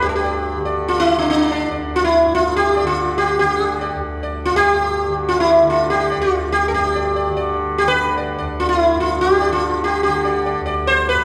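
A buzzing, plectrum-plucked sitar sits up front with a round, shimmering tone ringing through its sympathetic strings, carrying a solemn, meditative Indian classical melody at 144 BPM in 4/4 that speeds up over the 11.2-second excerpt, while a softly plucked tanpura drone hums low beneath it, all bathed in the wet reverb of a recital hall.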